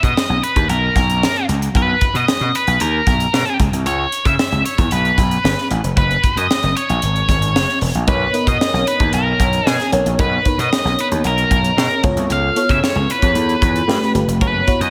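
A straight 4/4 groove at 114 BPM drives this upbeat, breezy slice of polished 1980s jazz-funk pop in B major, with a crisp fusion drum kit of hi-hat, tight kick and high-tuned snare sounding airy and up front from the first beat. Beneath it, a gritty slap bass with bright, overdriven amp tone runs from E1 to C#3 for the full 14.9 seconds. The melody comes from an octave-fuzz lead guitar, dark and picked, its distortion tinted by slapback echo as it moves between A#4 and E#5. At 8.1 seconds a lush, dreamy FM electric piano with a soft pad layer enters a little lower in the mix, its decaying tones colored by phaser and subtle chorus. The harmony moves from Bmaj7 through Bsus24, G9 and F#7 to a Bmaj9, then C#7alt and back to G9, all set in light reverb as a fragment lifted from a longer piece.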